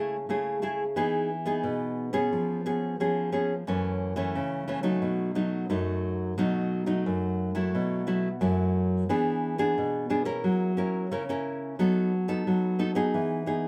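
A bright, fingerpicked nylon-string guitar sits up front and plays alone through this lively, sunny samba excerpt in a straight 4/4, moving through jazzy seventh chords from Amaj7/C# to a closing Emaj7 at 13.1 seconds, with a wet small-room ambience giving the sense of a band playing live together.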